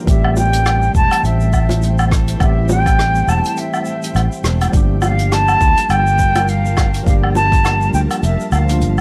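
Over a relaxed 103 BPM groove swung on the 16ths, where a deep, tape-warm electronic kick and brushed jazz kit with hi-hat, rim click, shaker and woodblock sit beside round, low-tuned bongos in the background, this smooth sunset chillout excerpt sets an airy, distant flute melody with tape echo up front over a growly, up-front fretless bass, clean tine electric piano with tape echo and an ethereal detuned pad with chorus and tremolo, moving from Am7 to Gm7 at 4.7 seconds in a dry, gritty small room.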